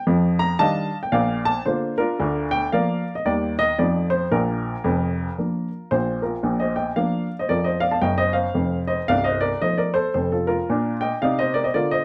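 A lively swing at 113 BPM in 4/4 drives this short stride piano excerpt, its eighth notes leaning into a gentle shuffle. A single upright piano carries the whole performance, playful and exuberant in Bb major, ranging from deep bass notes down at C1 up to Bb5. Its tone is woody and polished, with a short sustain that keeps each note crisp, and it sits up front and present in the mix. The harmony moves from an opening Fsus2 through Bb, Bb/D, Eb and F7 before settling back on Bb, with F7 returning near 8.6 seconds and resolving to Bb at 10.7 seconds. Close, detailed microphones capture the instrument in a moderate studio ambience, and the 12-second clip is cut from a longer piece.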